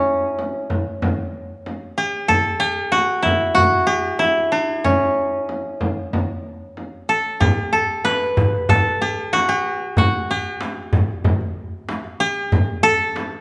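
A woody, fingerpicked koto sits up front and carries the melody between C#4 and B4 in this stately, passionate Arabic maqam ensemble piece, cut from a longer work, moving at 94 BPM in a straight 4/4. A vintage, band-limited frame drum enters at 0.4 seconds with a warm acoustic tone, and a crisp, deep metal-shell darbuka joins at 7.4 seconds. The band plays live in one large studio, bathed in a wet reverb, with the top end rolling off above 10.8 kHz.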